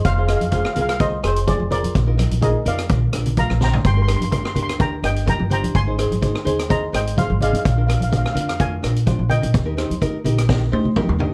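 A mellow, shimmering steel pan carries the melody from the first moment, played with soft rubber sticks over a small, dark fingerpicked nylon-string guitar and a woody pizzicato upright bass in this festive, carefree calypso excerpt. The street-band drum kit comes in at 0.1 seconds, up front with a boomy kick, a high-tuned snare and a rolled-off top, and fills at 3.4 and 10.5 seconds. Soft-handed congas with a thick, damped skin join at 0.4 seconds and sit in the background. The groove has a light swing, and the harmony moves from Fm through Bbsus4, Gm, Ab and Bb7 before landing on Eb. Light reverb and a dark, warm production give the short clip a carefree glow.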